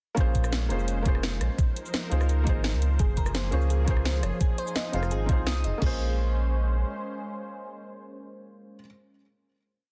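Rolling two-step drums drive this soulful, melancholic liquid drum and bass piece, with a knocking, up-front electronic kick under a tape-toned kit of cracking snare, metallic hi-hats, rim clicks, cabasa and crash, while a smooth, dark sawtooth synth bass carries a dub-style line. A felt-muted upright piano adds intimate, syncopated chord stabs with audible action noise and digital delay, and a lush, airy unison pad with chorus and phaser sustains the jazzy minor ninth and major-seventh harmonies, joined from 3.0 s by a ringing, harp-like synth pluck playing an arpeggiated sequence through chorus and tape echo. The drums stop at 5.9 s, and the bass carries on until 6.8 s as the piano and pad hold a final chord in a dense, heavily limited mix with light reverb.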